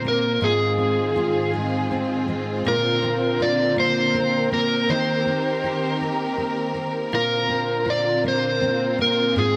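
Pop in Bb mixolydian at 54 BPM in 6/8, this romantic, heartfelt excerpt moves through Fm7/Ab, Bbadd9 and Eb6 across its 9.6 seconds. An overdriven electric slide guitar carries the melody up front, while a double-tracked, full-bodied jumbo steel-string acoustic guitar is fingerpicked close beneath it, with finger squeaks audible. A lush bowed string section holds sustained chords with expressive vibrato, portamento and a smooth top, and the blend sits in light studio reverb.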